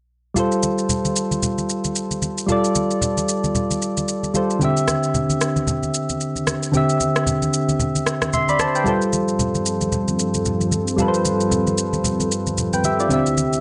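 Soft, round synth keys with an electric-piano color sit up front in this relaxed, soulful amapiano piece, their mellow, quickly fading chords touched with chorus from 0.3 seconds. A layered electronic shaker and rim click, slightly overdriven, carry the groove with a gentle swing. Bright, low-tuned acoustic congas with a thin-skinned snap sound as if from a small room. At 8.9 seconds a warm analog pad of detuned sawtooth tones eases in with a slow attack, holding smooth sustained chords that also carry chorus. Light digital reverb gives the mix a soft sheen, a faint mains hum sits underneath, and the passage is a short cut from a longer track.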